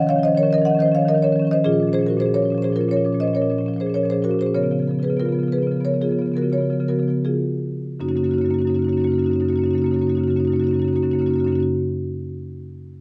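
Closely and clearly captured in a moderate recital hall reverb, this flowing, warm excerpt of contemporary classical music for solo marimba played with medium mallets sets woody rosewood bars up front in a rubato 5/4 in Gb major, its tempo ranging between 77 and 107 BPM and slowing from 1.6 to 8.0 seconds as the harmony moves from Ebsus2 through Bbm7 and Db6 to settle on Gb6.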